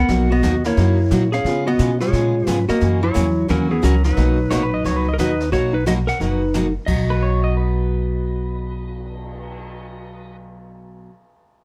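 A moderate club reverb frames this cheerful, playful western swing cut, with an up-front, twangy lap steel guitar carrying the melody through plate reverb and slide volume swells while a woody, pizzicato upright bass also sits up front. A hollow-body archtop guitar adds a second line until 5.1 s, a full-bodied dreadnought acoustic guitar picks out the accompaniment, and a distant brushed drum kit with dark cymbals and a boomy kick keeps the swung 4/4 pulse. A fingerpicked pedal steel enters at 4.5 s with its own second line and volume swells as the chords move from Bmaj7 through C#7 and F#7 before settling on B.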